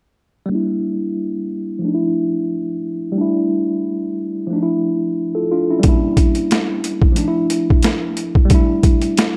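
A mellow tine electric piano opens this moody, dark boom-bap hip-hop excerpt, its worn, slightly out-of-tune tone sitting up front with a cassette-tape color and a filter sweep running through its whole length. It plays the accompaniment alone from 0.5 seconds, cycling through Em7b5, Dmadd9 and A7sus4 chords in a swung 4/4. At 5.8 seconds a sampler-style boom-bap drum kit joins with hi-hat, kick and snare, pitched down and overdriven, with a thumpy kick and a high-tuned snare. The drums come across gritty and compressed, re-recorded in a large room yet still placed close to the listener. A moderate scoring-stage reverb and a dark, warm production give the short passage its moody atmosphere.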